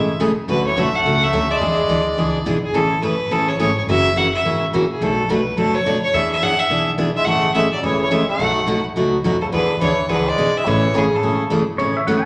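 A large studio's lush, generous reverb surrounds this brief, playful western swing snippet in A major, cut from a longer piece and driving along at 212 BPM with a swung eighth-note feel in 4/4. Up front, a bowed fiddle carries the melody with a clear, earthy tone and light vibrato, though it sits at a slight distance. A French horn with a straight mute adds a nasal, brilliant second line in classical style, soft in attack, dropping out early and returning at 7.2 seconds. A picked dreadnought acoustic guitar with fresh strings gives full-bodied, bright accompaniment throughout, while a pizzicato upright bass on gut strings thumps underneath with a dark, woody tone, lower in the mix. Harmony moves through jazzy sevenths such as Dmaj7, F#7, Bm7 and E7, and at 11.8 seconds a twangy, compressed pedal steel guitar slides in for a short second line with volume swells.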